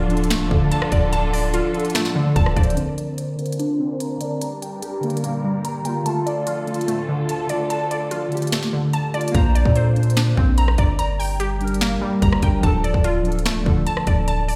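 Brooding and melancholic, this half-time trap excerpt in D minor at 146 BPM sets glassy, crystalline wavetable pluck arpeggios with tape echo over warbly lo-fi synth keys, while a dark, distant symphonic string section holds lush sustained chords until 9.3 s. A hard-clipped kick, sharp snare, crisp hats, finger snaps and rim clicks sit up front alongside a deep, mellow 808-style bass that drops out at 2.8 s and returns at 9.3 s, after a filter sweep and a stretch with the kick muted. The whole mix carries the reverb of a big sound system in a bare stone room.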